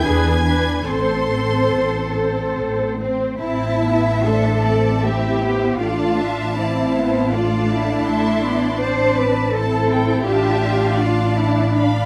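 The recording is close and detailed, with light reverb lending the string orchestra an intimate studio presence. This slow, melancholic classical movement in three unfolds with elegiac rubato and is cut from a longer piece. A rich, focused violin section carries the high melody above a clear second violin line, while the violas add expressive portamento to their lush accompaniment. Smooth, even cellos and an up-front double bass section, entering at 0.1 s, form the bass, and these lower strings sit noticeably louder than the violins. All five sections are bowed with vibrato, and the harmony moves from an opening E7 onto A minor, through D minor over A, back to A minor at 8.1 s, and closes on a rootless half-diminished chord over A.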